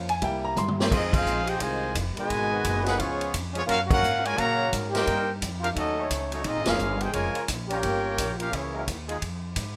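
This brief cut from a longer big band swing piece in F minor opens with a clear, vintage concert grand piano sounding over a woody, growly pizzicato upright bass, the piano dropping out after 0.9 s as a drum fill leads into the full band. At a brisk 174 BPM with a firm swing feel, the distant, roomy drum kit drives the groove with ride, hi-hat, a boomy kick and a medium-tuned snare, punctuated by crash cymbals and toms, and band accents land at 1.1, 3.9 and 6.6 seconds. A tight trumpet section carries the melody with vibrato and a smooth top, up front and bathed in plate reverb, while a warm trombone section with light vibrato and soft attack plays a second line beneath it. Further back, a dark, vintage trombone section holds sustained chords, moving through a restless sequence that starts on Fm7, shifts through Abm7, Db7 and Gbmaj7, and resolves to Fm. The mood is dramatic and sultry, captured in a rough home demo mix with moderate studio reverb.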